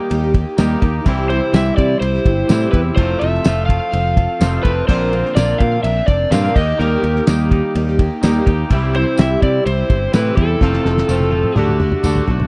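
A dry, close 1970s-style studio sound frames this warm, jangly folk and heartland rock excerpt at 126 BPM in a straight 4/4, where a shimmering, octave-doubled twelve-string acoustic guitar and a twangy, scooped electric guitar riff through spring reverb ride over growly, punchy picked bass, a damped 70s kit with a fat snare and tight kick, and a faint jingly tambourine, while an overdriven slide guitar carries the up-front melody from 1.3 seconds through chords moving from Eb and C to F and Bbadd9, returning to F as a drum fill starts at 10.6 seconds and ending on D.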